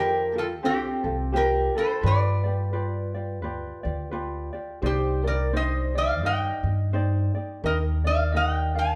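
A gently swung 4/4 lilt carries this sunny, relaxed Hawaiian excerpt, cut from a longer piece and lasting just 9.0 seconds. Up front, a metal-body resonator slide guitar sings the melody with a nasal, metallic twang, played with fingerpicks and a slide. Beside it, an upright bass plucked pizzicato on steel strings gives a woody, thumpy low end that sits just as far forward. A thumb-plucked ukulele adds light, mellow accompaniment, while a clean tine electric piano heard through its built-in speakers carries a second line in the background. The harmony moves from Fadd9 through G7 and Cmadd9 to Ebmaj7, and the band, playing live in one room, is wrapped in a moderate large-studio reverb.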